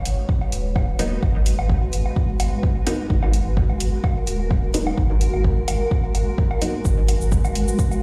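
The sound is deep and spacious, as if played on a big sound system in a bare room with a large studio reverb, giving this nocturnal dub techno excerpt in G# minor at 128 BPM a cavernous depth over a single G#m7 chord and a light 16th-note swing. An up-front electronic kick with a tape-warm thump and a round, sine-like sub bass pumping against the sidechain anchor the groove. Metallic electronic hi-hats and cabasa and a faint woodblock with dub echo sit low in the mix, while a cloudy, blurred granular pad sustains throughout, and a muted, detuned dub chord stab with phaser and echo enters at 1.0 s under a filter sweep.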